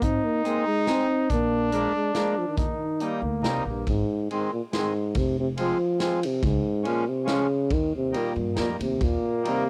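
A dark, classical-style euphonium carries the melody up front while a smooth-topped trumpet with light vibrato plays a second line, over woody pizzicato upright bass and a natural country drum kit with a punchy kick and medium-tuned snare, before a reedy, hollow, band-limited vintage accordion joins the accompaniment at 0.4 seconds in this jolly, bouncy alpine dance-band number in 3/4 cut from a longer piece; the trumpet drops out at 3.9 seconds as the tune moves to a new section and returns at 9.0 seconds, all captured as a dry home cassette recording with tape colour on the horns, drums and accordion.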